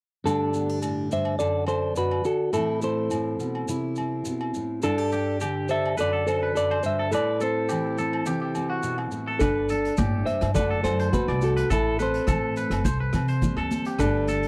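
Highlife guitar band music in G major at 105 BPM, sunny and danceable, in a straight 4/4 feel, cut from a longer piece. A fingerpicked steel-string acoustic guitar with a full-bodied jumbo tone and fresh strings sits up front with the accompaniment, while a clean, hollow-bodied semi-hollow electric guitar carries the fingered melody alongside it, over ringing agogo bells tucked in the background and grainy maracas. At 4.8 seconds a twangy, scooped electric guitar adds picked arpeggios, colored by spring reverb and tape echo. From 9.4 seconds the groove fills out with a woody, growly pizzicato upright bass, a vintage drum kit of hi-hat, punchy kick and rim click in a small pumping room with a rolled-off top, and high-tuned congas struck with hard hands, close and dry. The chords cycle through Gsus2, D/F#, Am and C, and the overall sound is dry, with little reverb.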